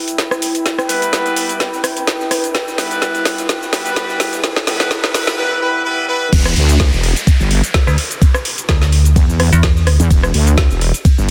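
A bouncy, gritty bass house cut in 4/4 with a light sixteenth-note swing, built on a garage drum kit whose woody snare, metallic hats, cabasa, rim click and cymbals run from the opening through the end, overdriven and up front in a small room. Over an E minor chord, a warbly, nostalgic lo-fi pad of detuned sawtooth and triangle tones breathes through chorus, phaser and sidechain pumping until 5.4 seconds, while a bright, tight horn section punches stabs through a filter sweep and digital delay during the build-up. A riser and downlifter sit quietly in the background from early in the build well into the drop. At 6.3 seconds the drop lands with the chords falling away: an overdriven, knocking electronic kick enters alongside a heavy, saturated wobble bass blending sawtooth and sine under chorus and pumping. A metallic, decaying FM bass joins briefly in the middle of the drop, and the whole mix is dense and heavily limited, bathed in a lush hall reverb with a faint mains hum beneath.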